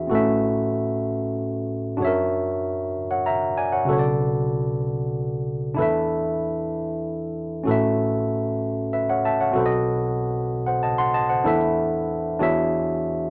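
A worn, slightly out-of-tune tine electric piano plays alone and up front, heard as if through its built-in speakers, carrying a reverent, uplifting gospel passage in 6/8. Its rich chords move from A69 through F#7b13, Bm9 and B7b9, then settle on E7sus4 before resolving to E13 near 12.4 seconds. A wet studio ambience surrounds this roughly 13.3-second clip cut from a longer piece.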